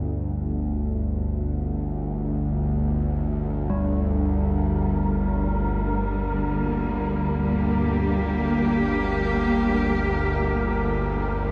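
Dark ambient drone in free time, ominous and unsettling, cut from a longer piece and heard through a wet spring reverb that leaves the whole mix echo-heavy. A tense, nasal, string-like drone sits up front from the start, bright and evolving with vibrato under a filter sweep, and at 3.7 seconds a smooth, dark cello section joins with sustained bowed chords while a bronze gamelan-type metallophone rings out mallet arpeggios in the background through analog delay until 10.0 seconds. From 4.3 seconds an airy, breathy wind-like noise texture drifts in alongside them.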